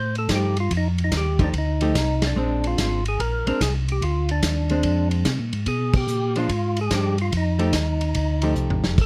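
Swung eighth notes drive this bluesy, greasy soul jazz organ trio excerpt in 4/4, with the band hitting accents at 2.2 and 5.9 seconds as the chords move from F9 through Bb9 and Bdim7 back to F9. A fat, lightly overdriven tonewheel organ with third-harmonic percussion and a slow rotary speaker carries the melody, while a second, round and mellow organ voice with chorus vibrato plays the bass line and a picked, compressed hollow-body archtop guitar comps alongside them. A vintage acoustic kit with dark cymbals and a tight kick sits up front in the close, dry sound and closes the cut with a drum fill at 8.6 seconds.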